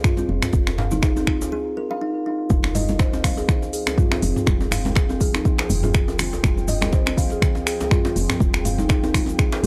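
A deep, up-front electronic kick drives this afro house excerpt at 122 BPM in F minor, with a 16th-note swing that keeps the groove rolling and the mood driving and warm. Around it sit an afro-pop kit of finger snaps, smooth hi-hats and toms, plus background layers of bright congas, a deep, compressed djembe with metal rattles, and a grainy cabasa. A close-miked kalimba rings out plucked arpeggios with a hollow-box tone, pumping with sidechain compression and trailed by analog delay, while a rustic, dry folk marimba plays a modest melody in the background, also through analog delay. A round, dark FM bass enters at 0.3 seconds holding F1, its woody attack thickened by tube saturation and sidechain pumping. After a break from 1.5 to 2.5 seconds, the drop shifts the harmony from Fm to Fmadd9, and at 3.8 seconds an ethereal, airy pad drifts in with chorus, reverb and a touch of 12-bit sampler grit. 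The excerpt has a dry, gritty small-room sound.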